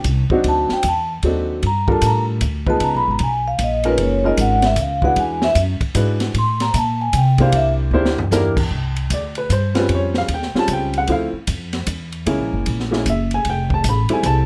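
A brief, playful cut from a longer small-group jazz performance opens with piano, upright bass and drums together in a swinging three-four lilt. The upright piano sounds woody and boxy with short sustain and sits up front, comping through rich, sophisticated extended chords. Beneath it, the plucked gut-string bass is thumpy and warm, also close and present. The acoustic kit adds an intimate small-room feel, with dark cymbals, a high-tuned snare and a boomy kick. At 0.5 seconds the vibraphone enters with a metallic, ringing solo voiced by medium mallets and a slow motor vibrato, carrying the melody until 7.7 seconds. A quick drum fill around 7.9 seconds leads the trio into a second pass, all captured with a dry sound.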